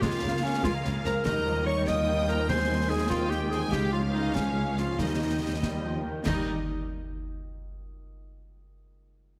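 Adventurous and heroic, this short cut from a cinematic adventure score moves at 96 BPM in a straight 6/8, set in Eb mixolydian over chords like Db6, Ebadd9, Ab/Eb, Db and Eb. A lush violin section carries the melody with focused vibrato, while a brighter, closer violin section and an up-front clarinet, distant and roomy in a classical style, weave a second line above and below it. In the background, violas with soft attack and expressive portamento fill in the harmony, and dark, smooth-topped cellos join bowed double basses on the bass. A fingerpicked concert harp rings through arpeggios, and concert snare, bass drum and dark clash cymbals sound close and dry, with very quiet timpani on Eb entering at 2.5 seconds. The orchestra sits in a wet scoring-stage reverb, yet the overall sound is heavily compressed like a radio broadcast, and only the harp lingers past 6.5 seconds to close out the final moment.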